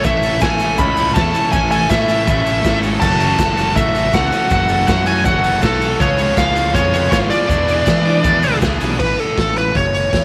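This short excerpt of upbeat, wistful indie rock sits in a light studio reverb, moving at 161 BPM in a straight 4/4 in A major. A smooth overdriven lead guitar carries the melody throughout with a tape echo trailing its bright, picked lines, while an overdriven electric guitar and a very quiet, twangy twelve-string electric guitar both play riffs until 9.0 seconds. The raw garage drum kit sounds gritty and saturated, with a punchy kick, medium-tuned snare, hi-hat and crash set in a stone room, and a fuzz-laden fingered bass adds a round, driven low end. Underneath, a dark analog pad holds very quiet, detuned sawtooth chords with chorus, and a grainy egg shaker sits in the background. From 3.0 seconds a glockenspiel struck with brass mallets adds a sparkling, bell-like second line, as the harmony moves from Amaj7 through F#m7, C#7 and E7 before resolving to A at 9.0 seconds.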